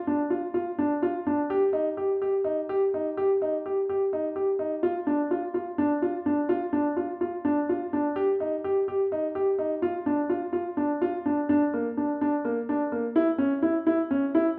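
Urgent and hypnotic, this contemporary instrumental piece, cut from a longer work, sets a solo concert grand piano in straight 7/8 at 252 BPM (counted in eighths) in D phrygian, its up-front, boxy tone carrying deep bass and long sustain between Bb3 and G4 from 0.1 s to 14.5 s, bathed in the wet reverb of a recital hall, with a new section arriving at 11.5 s.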